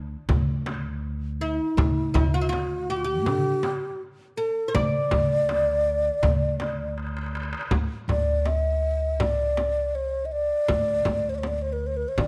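A breathy, mellow alto flute with vibrato and tongued notes sits up front in this passionate Arabic maqam ensemble passage, entering at 1.4 seconds over a pizzicato steel-string upright bass and a small, bright frame drum played with hard hands and heard close and dry. A woody, plectrum-plucked fretless oud with double strings plays a second line until 6.9 seconds, while a crisp metal-shell darbuka sounds distant in a large room and stops after a drum fill that ends at 7.7 seconds. Close, detailed microphones and light reverb capture this section cut from a longer piece.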